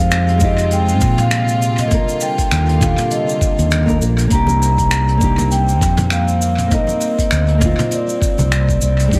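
An echo-heavy, reverberant mix frames this warm, wistful sunset chillout excerpt at 100 BPM with a gentle 16th-note swing, where a mellow, ringing vibraphone played with soft mallets carries the tape-echoed melody over thumb-plucked nylon-string guitar, reedy gut-string chamber strings holding sustained chords, and a bright, up-front fretless bass moving through Fm7, Ebmaj9 and Cm9, while a vintage brush kit with a rolled-off top, cabasa, finger snaps, hi-hat and toms joins at 0.1 seconds, a gritty, thumpy electronic kick enters at 0.4 seconds, and very quiet, close congas appear from 4.5 to 8.5 seconds.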